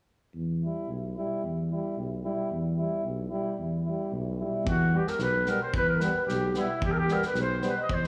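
A clear, vintage-toned cornet takes the up-front melody at 4.7 s, with a smooth-topped, dark flugelhorn carrying a second line and a loose acoustic drum kit with tight kick and medium-tuned snare joining, over a close-miked tuba bass line that starts at 0.3 s and a bright, distant trombone and clear euphonium offering lightly vibrato-tinged accompaniment with slapback echo, in this fiery, virtuosic Balkan brass band fragment in E Hungarian minor at 111 BPM in 2/4, heard as a live gig through the venue's PA with recital-hall reverb.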